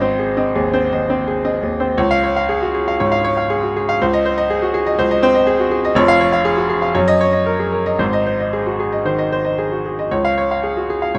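Heroic and sparkling, this short passage cut from a longer classical piece is a virtuoso piano study in a flexible, rubato four-beat metre. A bright grand piano plays alone throughout its 11.2 seconds, brilliant and smooth with a vintage character, sitting up front and spanning from deep bass to the upper middle register. Close, detailed microphones catch every note, while a moderate recital-hall reverb gives the sound a sense of space, and the opening gives way to a new section at 2.0 seconds.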